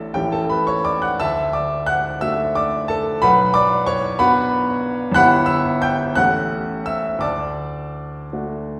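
Romantic classical character piece for solo piano, hopeful and lyrical in a rubato 6/8, this short excerpt cut from a longer work presents a clear, intimate baby grand up front with natural tone, long sustain and audible action noise, ranging from G1 to G6 through a progression that moves from A through D, Bm, Em/G and A7 to settle on D at 7.2 seconds, all bathed in the wet reverb of a recital hall.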